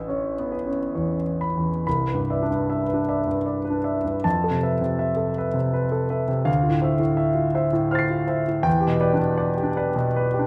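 Impressionist solo piano in C major, dreamy and luminous, drifting in a rubato 3/4 between 64 and 84 BPM. A clear, intimate grand piano sits up front with audible action noise and long sustain, spanning A1 to C7 through lush chords such as Cmaj9, Fmaj7#11 and Dm9 in a moderate recital hall reverb, in this 10.5-second excerpt cut from a longer piece.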